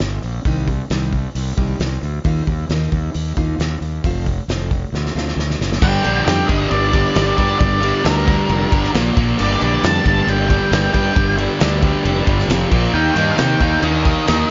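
Quiet-loud alternative rock in G minor at 135 BPM, this angsty, dark excerpt from a longer piece opens with a picked steel-string acoustic guitar playing bright, full-bodied arpeggios over a round, overdriven fingered bass and a loose indie drum kit with a fat snare, punchy kick and dark cymbals in a pumping studio room. The chords move from Cm through Ebsus2 and F to Dm7, and a drum fill from 4.9 to 5.8 seconds leads into the loud half. At 5.8 seconds the acoustic guitar has dropped out and an up-front thick fuzz guitar crashes in with a bright, distorted riff, while a dark octave-fuzz lead guitar carries the melody high above it, landing on Gm. A second thick fuzz guitar joins in the background at 12.9 seconds as the harmony shifts through F5 and Bb5 to Eb. The mix is dry, with a dull top end that keeps the heavy fuzz dense and heavy.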